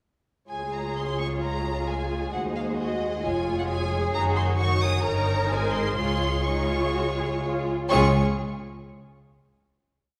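At 0.5 s a string orchestra begins this brief, lively classical-period piece in Db major at 121-133 BPM: the violins carry an expressive melody with vibrato and portamento, while second violins and a smooth-topped viola section fill in tremolo and sustained chords in the rhythm of the tune. A lush cello counter-melody answers at phrase ends, and an up-front, rich double bass section doubles the sustained bass line with passing notes. The harmony moves through Ab7/Eb and Eb7/G back to Db, and the bowed parts stop at 8.2 s as the final chord rings into a recital-hall reverb.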